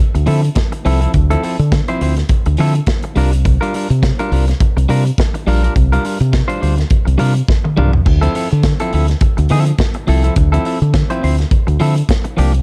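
Disco at 104 BPM in D minor with a light 16th-note swing, glamorous and sultry, cut from a longer piece and moving from Dm9 to C9sus4 and back. A bright, twangy, compressed clean electric guitar opens at 0.0 seconds with picked accompaniment, joined at 0.2 seconds by a punchy, up-front fingered electric bass and an acoustic studio drum kit with a punchy kick, medium-tuned snare, hi-hat, crash and toms. The drums play a fill at 7.5 seconds, and their rolled-off top sits within a dark, warm studio reverb.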